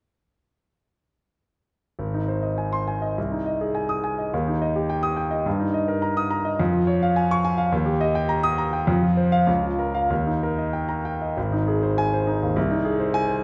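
Classical virtuoso piano study in 2/4 with a brilliant, heroic mood and a flexible, rubato feel, cut from a longer piece. A solo concert grand sounds from 2.0 to 13.4 seconds, natural and up front with a deep bass, spanning a broad range while the harmony moves through chords and inversions before returning to its opening chord at 11.4 seconds. A wet recital hall reverb surrounds the instrument, and the top end is soft and rounded.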